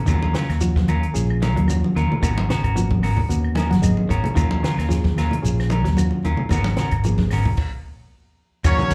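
A dark, round fingered electric bass sits up front in this hypnotic, driving afrobeat groove, cut from a longer piece and heard as a live gig through a club's PA with light reverb. Beneath it, a compact cocktail drum kit plays dry and natural, with dark cymbals, a high-tuned snare and a tight kick. Bright, damped congas with hard hands and woody claves with slapback echo sit in the background, while a grainy shekere sounds close and dry. Two clean, picked semi-hollow guitars fill the middle: one plays arpeggios through lush chorus, the other plays stabs soaked in spring and plate reverb. A reedy electric piano comps over the Ebm9 and Abm11 chords and takes a fill from 3.3 seconds. After a stop at 7.6 seconds, a smooth-topped solo trombone with vibrato enters on a second line at 8.6 seconds, and a punchy horn section in octave doubling bursts in with the melody at 8.7 seconds.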